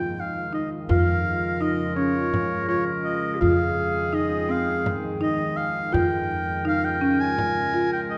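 Contemporary instrumental chamber music in 7/8 at 167 BPM counted in eighths, this hypnotic, restless passage is cut from a longer piece and moves through Fm7, Eb9sus4 and Fm9 chords. An oboe carries the melody up front with light vibrato and a classical tone, while a clarinet sounds distant and roomy as it plays a second line beneath it. A buzzing marimba, close-miked and dry, plays woody arpeggios with medium mallets on hardwood bars, and a pizzicato upright bass holds a dark, steel-strung low F. A deep, moody ambient pad sustains mellow chords with a slow attack, long release, detuned sawtooth layers, a sine sub octave, chorus and its own reverb. At 0.9 s a large frame drum joins in the background, played with soft hands. The whole mix sits in a wet scoring-stage reverb with a dark, warm production.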